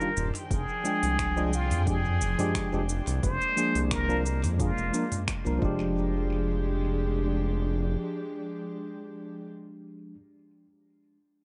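Echo-heavy, lightly reverberant and rolled off at the top, this excerpt of wistful, relaxed sunset chillout at 88 BPM in F dorian moves over a gently swung 4/4, as an up-front plunger-muted trumpet with wah-wah, scooped notes and light vibrato plays a clear, vintage jazz melody through tape echo until 5.2 seconds, over a worn, slightly out-of-tune tine electric piano heard through a combo amp, soft-attacked sul tasto strings holding dark bowed chords, a round, deep analog bass entering at 0.2 seconds, and a punchy small-room electronic kick alongside a deep house kit of finger snaps, smooth hats, shaker and toms.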